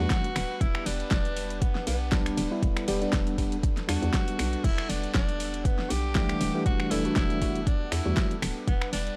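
A clear tenor saxophone leads this late-night deep house excerpt with a present, jazz-style solo, its light vibrato, soft attacks and scooped notes trailed by analog delay. Beneath it, a tine electric piano plays clean stabs through built-in speakers, roughened by 12-bit sampler grit, echoed on tape and pumping with sidechain, until it drops out at 8.3 seconds. A smooth, warbling analog pad holds detuned, chorused chords in the background, carrying the same vintage grit and sidechain pumping. A hollow, bouncy FM bass knocks out punchy notes with a fast attack and a decaying tail, thickened by transformer saturation, while a deep electronic kick sits up front beside a layered, tape-warm kit of fat snare, metallic hats, ride, crash and finger snaps with a light swing. The harmony moves from Em11 to G and back, and the recording has a dry, gritty hardware character, with vinyl crackle over a digital ambience.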